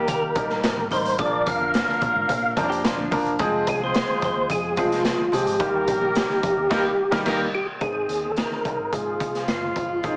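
Uptempo 1960s-style soul in Eb major at 109 BPM, warm and joyful, with a percussive tonewheel organ carrying the melody through chorus vibrato and a fast rotary speaker, its key click audible, while a mellow, tight horn section in octave doubling plays a second line alongside a clear, intimate baby grand piano with long sustain. A raw, saturated garage drum kit sits up front with a punchy kick and dark cymbals, joined by a round, foam-muted fingered bass, very quiet low-tuned congas, and a twangy, direct-recorded clean guitar riff that surfaces only at 2.7 and 6.7 seconds, the second time under a band accent. Echo chamber reverb and a heavily compressed radio sound with vinyl crackle and small-speaker coloring give this short cut from a longer piece a vintage broadcast feel as the chords move through Eb, Bb, Fm, back to Eb and on to Ab.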